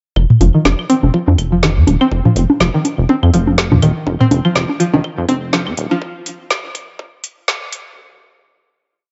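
A swung four-on-the-floor pulse at 123 BPM drives this sparse, clinical minimal techno build, where a very quiet knocking kick sits under a garage kit's woody snare on the backbeat and metallic hats, analog claves, low toms and low bongos click in cross rhythm through tape echo, a rubbery, hollow square bass rolls in staccato with sidechain pumping, and a twangy, string-like resonator pluck with chorus and tape echo repeats a 9-step loop drifting against the bar under a filter sweep until 5.9 s, all in a dark production with light reverb.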